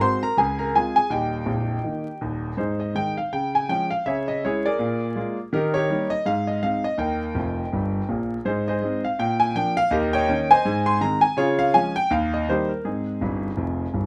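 Stride piano jazz with a swinging, playful mood, moving at a brisk 164 BPM in Ab major with a lilting swing on the eighth notes. A solo concert grand piano carries the whole piece, sitting up front with a clear, natural tone, deep bass and long sustain, and it spans from the very bottom of the keyboard up into the upper register. The harmony moves through bright major-key changes, touching a darker minor colour and dominant seventh chords before settling back home. The pianist drops in short fills around 7.4 seconds and again at 13.2 seconds, just before this cut from a longer performance ends at 14.1 seconds. The sound has the feel of a rough home demo, with moderate studio reverb and a layer of vinyl crackle.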